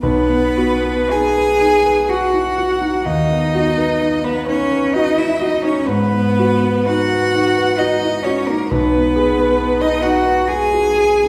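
Lyrical and serene, this slow romantic movement for piano trio unfolds in a gently rubato three-four, cut from a longer piece. A clear, close violin carries the melody with smooth vibrato, while a rich, focused cello sings a second line beneath it and a dark, mellow grand piano, with its action noise audible, supports them with an intimate, vintage accompaniment. All three play throughout the 11.3 seconds, heard from further back in a recital hall whose wet reverb lingers around them.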